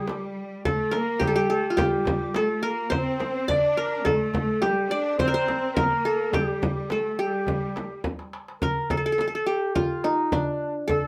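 Melancholic and hypnotic, this short cut from a longer Turkish makam ensemble piece moves at a steady 106 BPM in a straight 4/4, set in makam ussak on G and tuned to A4 = 441 Hz. A plucked qanun carries the melody up front, its triple strings giving a bright-edged acoustic sparkle. Alongside it, a raspy, growling clarinet with light vibrato and a jazz-tinged character plays a second line, while a lush, bowed cello section adds a smooth, symphonic cushion of vibrato until 8.0 s. A crisp, metal-shelled darbuka struck with hard hands and a deep, close frame drum drive the rhythm, and a drum fill at 8.0 s leads into a new section at 8.6 s. The ensemble sits in a modest small-room ambience that keeps the sound intimate.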